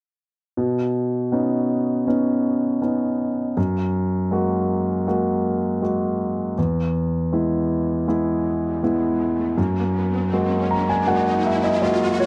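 A straight, unhurried 4/4 pulse at 80 BPM carries this heartfelt, hopeful pop passage in B major, cut from a longer piece. A concert grand piano plays the accompaniment from 0.6 seconds, ranging from E2 up to A#5, with deep bass, long sustain and an intimate, polished tone that sits up front, its action noise clearly audible. The harmony moves through Badd9, F#add9, E and back to F#add9. An electronic riser enters at 8.5 seconds, sitting quietly beneath the piano, and the piano adds a fill from 10.3 seconds to the close. The sound is that of a dry, close studio recording in a 1970s style, with little reverb.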